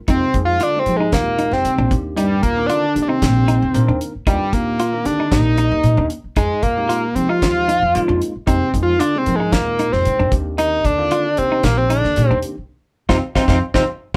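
Recorded with light reverb, as if the band were playing live in one room, this short cut from a longer electric jazz fusion piece feels driving and slick at 114 BPM in a straight 4/4, set in F dorian. Up front, an overdriven synth lead carries the melody with a gritty, screaming, guitar-like tone, sustained notes and vibrato. Beneath it, a breathy trombone sits in the background with a dark, whispered, close-miked second line. A bell-like tine electric piano adds clean accompaniment, while a clean, compressed electric guitar picks short stabs. A woody pizzicato upright bass and a damped 70s drum kit, dry and up front with a fat snare and tight kick, drive the groove over chords moving from Fm11 to Cm9. The band hits an accent on F5 at 12.7 seconds, and a drum fill closes the passage at 13.8 seconds.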